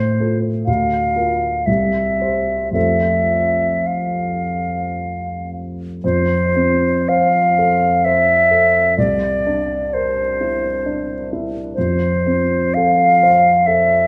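Romantic classical duo in F major and 3/4, moving with tender rubato at 53-68 BPM, where a pure, straight-toned concert flute with crisp attack sings the melody up front from C5 to F5 over a dark, mellow baby grand piano whose intimate, vintage sound carries audible action noise, all set in a recital hall's moderate reverb across this 14.1-second passage cut from a longer piece.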